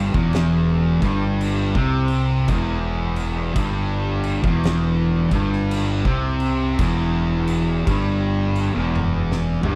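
A slow, swung stoner and doom metal fragment, ominous and brooding, with a double-tracked fuzz guitar riff up front, picked and distorted, over a growly, overdriven fingered bass that sits on an E minor chord throughout. An oversized low-tuned acoustic drum kit enters at 0.1 seconds with a punchy kick, fat snare, toms and dark crash cymbals, its bright stone room pumping around it. A drum fill arrives at 8.9 seconds just before the cut, and the overall sound stays dry.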